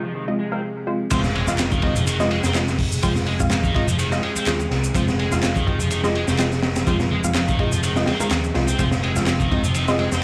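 A swung 125 BPM breakbeat groove in F minor, cut from a longer piece, drops at 1.1 seconds. Crunchy, up-front drums with a tight kick and high-tuned snare arrive alongside a round, punchy picked bass, overdriven electronic shaker and handclaps and a very quiet electronic impact, followed shortly by soft, low-tuned congas. Together they join a funky, gritty bed of double-tracked distorted guitar riffing, muted sawtooth dub chord stabs with chorus and dub echo, and distant bowed chamber strings carrying vintage 12-bit sampler texture and sidechain pumping, with both the stabs and the strings having opened on filter sweeps.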